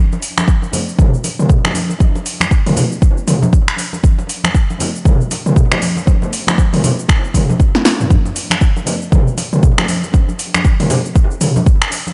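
A punchy, overdriven deep house kit of finger snaps, metallic hi-hats, shaker, snare and toms that sounds re-recorded in a large room opens this driving house excerpt at 118 BPM with a swung 16th feel, alongside low-tuned, ringing congas played with soft hands and colored by tape echo, before a deep, tape-warm electronic kick joins up front at 0.5 s, all set in an echo-heavy mix with dulled highs and a brief drum fill at 7.7 s.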